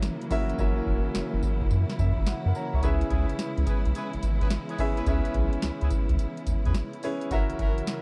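A booming, overdriven analog drum machine with vintage 12-bit sampler grit, a deep kick, crisp snare, metallic hi-hats and tambourine drives this punchy, confident new jack swing at 107 BPM in C# dorian, its hi-hats dropping out from 0.6 to 2.8 s as a round, nasal analog bass enters, while an intimate concert grand piano with audible action noise adds a fill, a bowed studio string section with vibrato and portamento sustains chords moving from F#7 to C#m7, and a jazz-style horn section with light vibrato adds stabs from 2.8 s, in a dark, dry production.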